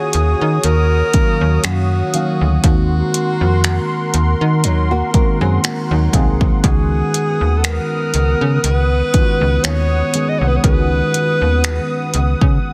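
A slow, lightly swung 60 BPM groove in 4/4 anchors this moody, longing contemporary R&B fragment, carried by a punchy, overdriven pop drum kit of finger snaps, metallic hi-hat and kick sitting up front, with soft clipping on the snare. Beneath it, a snappy FM bass with a metallic, fast attack and decaying notes holds the low end from C2 to Eb3. A worn, slightly out-of-tune tine electric piano runs through a phaser over chords moving from Ebm7 to Ab9/Eb at 2.6 seconds and Db9sus4 at 6.6 seconds, while a smooth, warbling analog pad of detuned sawtooth tones swells in slowly behind it, chorused and pumping against the sidechain. On top, a clear alto saxophone sings a jazz-style solo line with vibrato and subtone, trailed by delay. Between 4.6 and 6.6 seconds a small fingerpicked nylon-string guitar adds delayed arpeggios, finger squeaks audible, before the dense, heavily limited, nearly dry mix carries on to the cut.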